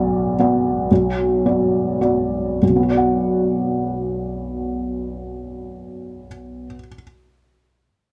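Classical in 3/4, this short excerpt cut from a longer piece carries a longing, melancholic mood with a rubato feel. A felt-muted upright piano plays the accompaniment throughout, spanning from deep bass to the upper middle register, its tone soft, mellow and intimate, set up front in the sound. The opening passage slows down over its first 2.6 seconds before a second section begins and runs to 6.3 seconds. The harmony rests on a B minor chord from the start. Light reverb and a dark production give the recording a hushed, close quality.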